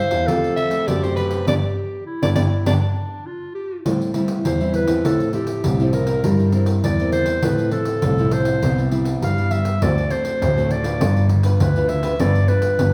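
A straight 4/4 samba and choro groove rides on a jingly pandeiro and a fingerpicked nylon-string guitar with a classical, acoustic tone, while a dark baby grand piano carries the bass line, its mellow, worn sound boxy, intimate and up front, with audible action noise. The mood is lively and playful. A growling soprano saxophone leads the melody in a jazz style, clear and raspy with a gritty edge, light vibrato and a smooth top, until it stops at 2.7 seconds, as a warm clarinet weaves a second line beneath it. The band hits accents together from 1.5 seconds until 3.9 seconds, when the clarinet steps forward with a present, classical-style solo that runs to the end of this cut from a longer piece. The whole group plays live in one room, bathed in a wet, large studio reverb.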